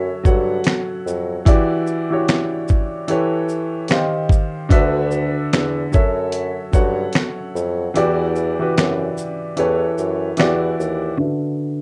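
A woody upright piano with a low-pass filter and long sustain and a mellow bassoon playing the bass line with light vibrato open this nostalgic, melancholic, swung lo-fi hip hop excerpt. At 0.3 seconds a gritty, compressed sampler-style drum kit joins up front with finger snaps, hi-hat, shaker, snare and a thumpy kick, the kick dropping out at 7.9 seconds, all in a rough home demo mix with light reverb and jazzy seventh and ninth chords.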